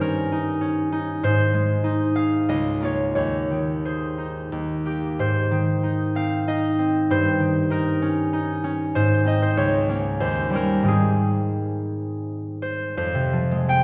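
Flowing rubato in a lilting 3/4 at roughly 81-100 BPM, this dreamy, graceful classical excerpt for solo concert harp in Ab major is fingerpicked up front with a ringing, warm tone from Db2 to G5, swaying through chords like Eb7/G, Ab and Bbm/Db before turning to Fm at 13.0 seconds, all bathed in a wet scoring-stage reverb.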